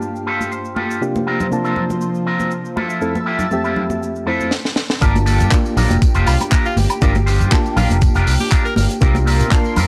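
Groovy and cosmic, this nu-disco passage in G dorian moves at 120 BPM with a light sixteenth-note swing. A reedy electric piano with fast tremolo, sampler grit and analog delay plays alongside a thick, warbling unison pad under a filter sweep, while a twangy envelope-filtered guitar riff, a clean guitar fill, and bright shaker and hard-hand congas keep things moving. A tight funk kit with a high-tuned snare, handclaps, tambourine and woodblock enters with a fill at 4.5 seconds, and at 5.0 seconds the drop brings in a punchy, amped fingered bass and a thumpy electronic kick up front, with a forceful tenor saxophone adding scooped notes from 6.3 seconds, all in a dry, gritty small-room sound with cassette-tape character.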